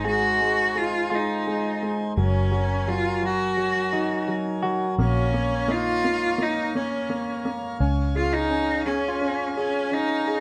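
A soft, felt-muted upright piano with audible action noise opens this heartbroken, reflective acoustic folk-pop ballad excerpt together with a reedy, breathing pedal harmonium holding sustained chords, clean electric guitar arpeggios shimmering with harmonic tremolo, and a round, foam-muted electric bass up front, at a straight 85 BPM in Bb minor, tuned to A4 = 444 Hz. From 0.1 seconds a clear, bowed cello played by a single player carries the melody with smooth vibrato and a slapback echo over the chords Ab, Gbadd9, Bbm and Db, all set in light reverb.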